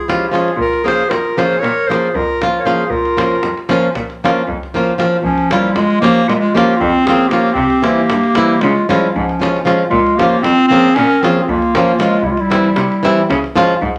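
A close-miked clarinet with a soft attack carries the melody up front in this restless, fiery Balkan wedding-band tune in 9/8, played with a classical poise. A mellow second clarinet adds a supporting line, while a boxy, fingerpicked flamenco guitar with fresh strings sits equally forward as accompaniment. A single bowed cello enters at 0.6 s to hold the bass with a rich, reedy, gut-string tone in period style, and a tight, compressed davul adds saturated percussion. The harmony circles among Db, B-flat minor and C, and the music moves into a new section at 5.2 s. A moderate large-studio reverb gives the ensemble space, and the passage is cut from a longer piece, ending around 14 seconds.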